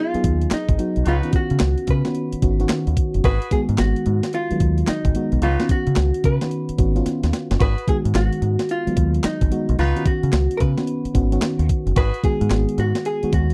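New jack swing R&B with a punchy, confident strut and a swung sixteenth-note feel, cut from a longer piece and moving between G#m7 and C#9sus4. A dark, clean hollow-body jazz guitar carries the melody with slapback echo over a soft FM electric piano with chorus, while a round, deep dub bass and a thumpy 12-bit drum machine with handclaps sit up front, the drums taking a fill at 7.1 seconds. A distant, tight horn section adds stabs with slapback echo from 1.1 to 12.2 seconds, all captured in a dry, close 1970s-style studio sound.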